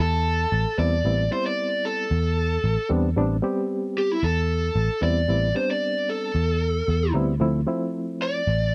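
Straight-eighth soul blues with a mournful, brooding air, this dry, close 1970s-style fragment features an overdriven lead guitar from a small cranked amp soloing in the upper-middle register over a dark, round, foam-muted picked bass, while a barky, reedy electric piano with fast tremolo and light overdrive enters at 0.8 seconds, the harmony resting on Am7 before moving to Dm7 at 7.4 seconds.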